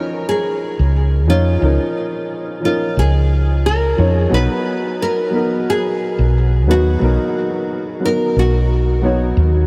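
A nylon-string guitar carries the melody from the first moment, its old strings fingerpicked with a woody, classical tone under lush chorus and analog delay. A dark, mellow baby grand piano accompanies it with a boxy, short-sustain sound trailed by diffuse ambient delay, and a round, hollow-body fretless electric bass enters up front at 0.8 seconds, given a lush chorus of its own. This blissful sunset chillout piece moves at a relaxed 89 BPM with a light sixteenth-note swing, shifting from Db69 to Cbmaj7 at 4.3 seconds inside a dreamy mix soaked in huge ambient reverb, and it is cut from a longer piece.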